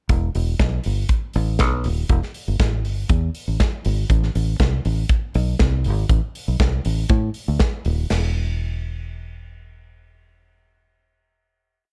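Disco at 120 BPM in E minor, tuned to A4 = 435 Hz, this short, glamorous and driving piece pairs a modern studio drum kit with a fingered electric bass, both up front in a dry, close sound. The acoustic kit plays a four-on-the-floor disco beat with open hi-hats on the off-beats, crash cymbal and a medium-tuned snare; its tone is dark and smooth with a rolled-off top and a punchy kick. The direct, foam-muted bass drives a syncopated disco line with slides and chromatic approach notes, then carries on alone after the drums stop at 8.2 seconds, holding a final note until 11.8 seconds.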